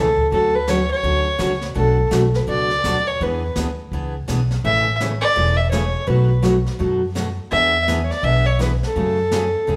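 A dark, boxy fiddle carries the melody up front, bowed by a single player with light vibrato, in this cheerful, down-home western swing excerpt cut from a longer country piece. Beneath it, a bright, full-bodied picked dreadnought guitar plays accompaniment through seventh-chord changes, while a woody, growly pizzicato upright bass thumps up front and a brushed jazz drum kit with a high-tuned snare and boomy kick joins at 0.2 s. The band plays live together in a large studio with moderate reverb, giving the swung groove a roomy, natural feel.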